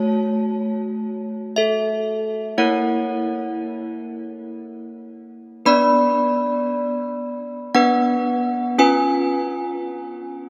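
Desk bells open the recording alone at 0.0 s and carry this short classical handbell tune through to 10.5 s, a passage cut from a longer piece. The mood is solemn and wintry, moving at a slow 58 BPM in 3/4 with a straight feel, and the tuning sits at A4 = 438 Hz. The bells span A3 to B5 and sound clear, ringing and slightly clanky, a touch out of tune, with a boxy, up-front presence. They are bathed in a wet cathedral reverb with a long 5.3-second decay that lets each strike hang in the air. The harmony travels from F#m/A through F#7/A#, arrives on Bm at 5.7 s, and lands on C#7 at 8.8 s.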